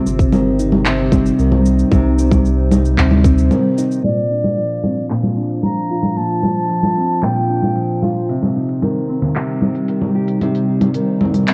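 Wistful and intimate, this folktronica excerpt in C minor at 113 BPM pairs thumb-plucked nylon-string guitar arpeggios and a warbling, nostalgic pad of sustained chords with an organic electronic kit of congas, handclaps, smooth hats and shaker, while a round sine sub bass and tight electronic kick play until about 3.5 seconds, a short break follows, and a pure, straight-toned concert flute carries the melody from 4.0 to 8.0 seconds as filter sweeps move through the guitar and pad over Cm and Bbadd9 chords, all with a lo-fi cassette hue and light reverb.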